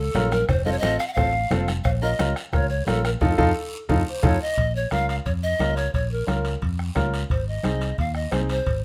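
An airy pan flute melody and a round, fingered electric bass open this danceable, passionate cumbia excerpt up front, joined almost at once by a clear, woody upright piano, background congas with soft hands, ringing vintage cowbell and timbales, a raspy guiro and a dry, soft-beater bombo under light reverb, with a band accent at 3.2 seconds and a drum fill at 3.9 seconds leading into a new section at 4.6 seconds.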